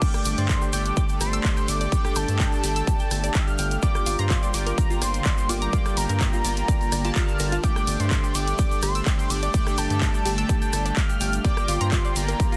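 A punchy, layered electronic kick sits up front in this expansive, driving progressive house drop at 126 BPM, with the lead, polysynth, pluck, kit and shaker all sounding from the first beat, and at 0.3 seconds a round, deep analog bass and a lush supersaw pad join, the pad holding sustained chords through a phaser in the background. Above them, a thick, dark unison lead with vibrato carries the melody, while a glossy, retro chorused polysynth fires stabs and a full-bodied analog pluck spins arpeggios, each pumping to the sidechain and trailed by delay. The big-room dance kit adds crash, handclaps, hi-hat and rim click over a grainy egg shaker, as the harmony moves between Dsus4/G and Gm7 in a dense, heavily limited mix that is cut from a longer piece.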